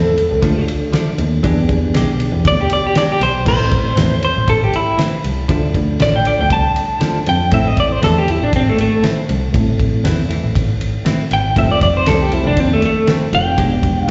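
A smoky, brooding straight-eighth soul blues excerpt at 119 BPM opens with a slightly broken-up electric guitar from a small old amp carrying the melody with tremolo and slapback echo, over a bowed, rich double bass, a reedy, worn electric piano with fast tremolo in the background, and a bright, twangy direct-recorded clean guitar playing stabs and soloing throughout with lush chorus. A cloth-damped, thuddy drum kit joins at 0.2 seconds with a fat snare, tight kick and dark cymbals, while the harmony moves through Dm, E7#9, Am and F7. The sound is that of a live gig heard through the venue's PA in a recital hall, muffled at the top.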